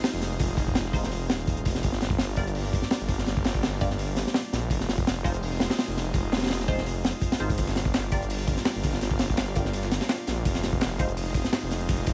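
Drum and bass with a jungle edge at 167 BPM in G phrygian, this atmospheric, raw excerpt sets a crunchy, saturated breakbeat kit and a thick, menacing detuned saw bass up front over a vinyl crackle, while an airy, breathy chorused pad holds Fm7 and Gm7 chords in the background, a muted, phaser-touched dub chord stab flickers very quietly, and a dusty, overdriven sampler-style kit of hi-hat and snare joins in the background at 7.6 seconds.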